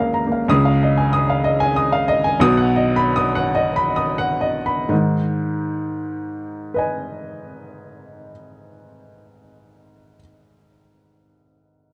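Neoclassical minimalist piano in G# dorian, melancholic and intimate, this short passage from a longer piece features a solo upright piano with a woody, natural tone placed up front in a dry, close 1970s-style studio sound, moving in a rubato 3/4 between 63 and 95 BPM and slowing through the opening 4.9 seconds as the harmony passes from C#add9 to B before settling on G#m, with the playing spanning B1 to D#6.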